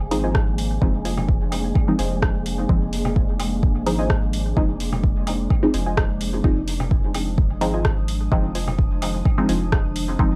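Dry and cavernous, this hazy dub techno fragment at 128 BPM in F dorian sits on an Fm7 chord, led by a muted, detuned sawtooth chord stab soaked in chorus, phaser, cassette grit and dub echo under a filter sweep, with a quieter filter-plucked stab riff echoing higher in the background, a warbling, nostalgic lo-fi pad, a round triangle-and-square sub bass, and a breathy wind-like noise layer, all pumping against an up-front deep kick, while tape-warm hi-hat and rim click from a deep house kit join, and congas and woodblock enter at 1.2 seconds.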